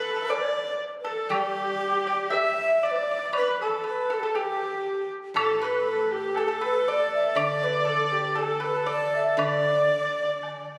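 Festive yet pastoral, this fragment of a longer Chinese traditional chamber piece moves at a slow 59 BPM in 2/4 in the D zhi mode. A breathy, reedy xiao carries the melody with vibrato, while a husky, earthy horsehead fiddle up front with portamento, a background large dizi with a buzzing membrane, and a dry, percussive pipa share a second line in the same register, over a background woodblock. A ringing, silvery guzheng enters at 1.3 s as low accompaniment, all heard through a lush concert-hall reverb and phone-in-the-room compression.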